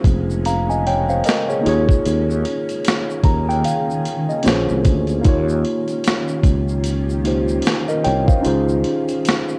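Lightly reverberant and cassette-worn, this nostalgic, hazy lo-fi hip hop clip moves at 75 BPM with a swung 16th-note feel, built over chords such as Bbm9/F, Eb7sus4 and Dbmaj9. Up front, a gritty, compressed boom bap sampler kit pairs a thumpy kick and high-tuned snare with hi-hat, while a growly fretless bass sustains beneath a worn, slightly out-of-tune tine electric piano that plays a fill from 2.9 to 5.3 seconds. Behind them, a blurred, evolving granular pad drifts with slow-attack sustained chords, and a grainy, mellow tube shaker sits in the background.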